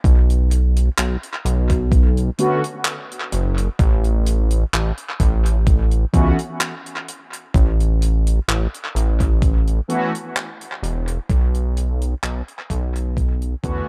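Hazy and melancholic, this slow vaporwave excerpt at 64 BPM in B minor sets a chorused synth bass, glossy with pulse-width modulation and a tube-saturated edge, over a thumpy, overdriven electronic kick and a dry cocktail kit of handclaps and hi-hat treated with tape echo, while a dark, round synth brass with ring modulation and lush chorus enters at 2.4 seconds before the echo-heavy small-room mix fades out from 8.8 seconds.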